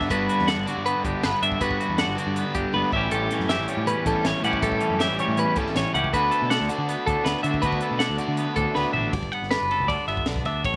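Up front, a compressed twelve-string electric guitar rings out bright, clean picked arpeggios high in its range, giving this short math rock and midwest emo clip a bright, wistful glow in a straight 4/4 feel. Beneath it, a twangy, scooped electric guitar plays accompaniment with a slapback echo, while a double-tracked, overdriven guitar picks a crunchy riff until it drops out at 9.1 seconds. A fingered electric bass, recorded direct and amped with overdrive, adds a growling low end. A compact acoustic cocktail kit keeps things dry, with dark cymbals, a high-tuned snare, a punchy kick, hi-hat, ride and toms, and drum fills at 2.7 and 8.8 seconds. The harmony moves from Gmaj7 to A7 and D69 before returning to Gmaj7, and the outdoor sound carries little reverb.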